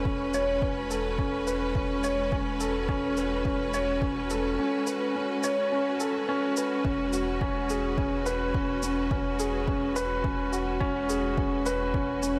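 Hopeful and luminous, this piano and strings electronica excerpt moves at 106 BPM in 4/4, with an up-front grand piano riff softened by a low-pass filter and delay over lush, bright string chords with vibrato, a round sine sub bass pumping under sidechain, a punchy overdriven electronic kick entering at 0.1 seconds and a produced shaker, all set in a moderate echo chamber reverb with small room ambience as the harmony shifts from Aadd9/E to E69 at 6.8 seconds.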